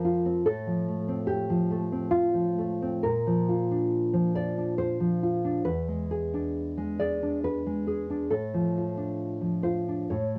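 A home cassette recording in a snug booth with a short, close ambience carries a dark, full-bodied nylon-string guitar set up front, its deep classical tone thumb-plucked across a range from E2 to D5. This intimate, passionate romantic piece in D minor moves in a rubato 3/4 at about 69 BPM, the uneven beats giving the solo line a freely breathing feel, with the guitar tuned slightly below standard pitch at A4 = 438 Hz. Cut from a longer work, the roughly 10-second passage moves through F/A, Bb and E7 before settling on Dm/A at 8.3 seconds.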